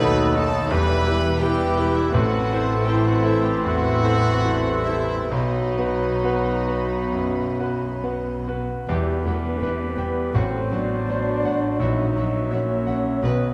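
A clear, up-front concert grand piano carries the melody in this brooding, passionate romantic movement for piano and orchestra, its deep bass and smooth, vintage tone ranging from A1 to G5 across the whole passage. High bowed violins, played sul tasto with a pure, floating sound, share the melody above it. Mellow clarinet, an airy, hollow flute with vibrato, and a soft-attacked oboe weave second lines in the background, joined by a very quiet, distant second violin section. Dark violas and a roomy bassoon supply the accompaniment, while a French horn section and a tight, close-miked trombone section hold sustained chords, and a punchy solo trumpet adds stabs from a distance. Woody double basses with vibrato and intimate cellos anchor the bass, all in a rubato 4/4 that moves from B7 through Em and Am toward F#dim/A and F#7/A# around 10.3 and 11.8 seconds. A wet concert hall reverb wraps the ensemble in this passage cut from a longer piece.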